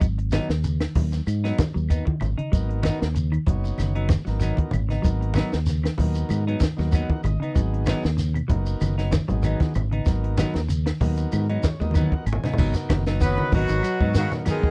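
A round, punchy fingered bass sits up front with a dry cocktail drum kit of dark cymbals and a high-tuned snare, driving a defiant, hypnotic afrobeat groove on a G#m7 chord, while grainy shekere, woody claves and thin-skinned, low-tuned congas fill out the percussion. Two clean picked electric guitars play dark background arpeggios and chorused stabs, and a reedy combo organ joins at 2.5 seconds, adding fills before a drum fill leads into the next section. At 13.2 seconds a clear, tight horn section in octaves takes the melody with a raspy, gritty tenor saxophone beneath it, both carrying slapback echo in this close, 1970s-style studio sound.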